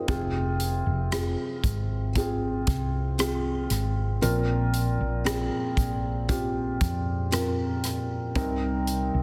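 Longing and emotional, this short excerpt from a longer pop ballad moves at a slow 58 BPM in 4/4 with a straight feel, set in F minor. A felt-muted upright piano sits up front carrying the accompaniment, its thick felt giving a soft, mellow, intimate tone with audible action noise and a vintage character. Beneath it, a woody fretless electric bass adds a dark, round, hollow-body sound colored by analog chorus. A natural country drum kit keeps time on hi-hat, kick drum and rim click, sounding airy and polished with a punchy kick. The harmony moves from Fm to Bbsus2 at 4.2 seconds and reaches Cm7 at 8.4 seconds, all within light reverb and a small room ambience under a dense, heavily limited modern master.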